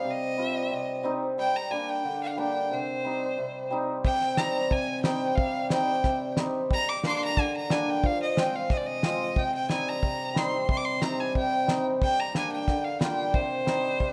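Heard through a moderate recital hall reverb, this short cut from a longer klezmer piece sets all three of its parts up front in a bittersweet yet festive C minor, moving at 90 BPM in 2/4 with a straight feel. A single bright violin carries the melody between C5 and D6, its intense bowed tone colored by vibrato and an airy bow. An acoustic hammered dulcimer supplies shimmering, ringing accompaniment spanning C3 to F4. At 4.0 seconds a damped 70s drum kit joins with a tight kick and a fat snare, its sound dry with a rolled-off top. The harmony circles between Cm and Gm with a brief turn to Fm, and the opening phrase is restated once the drums arrive, running on to 14.1 seconds.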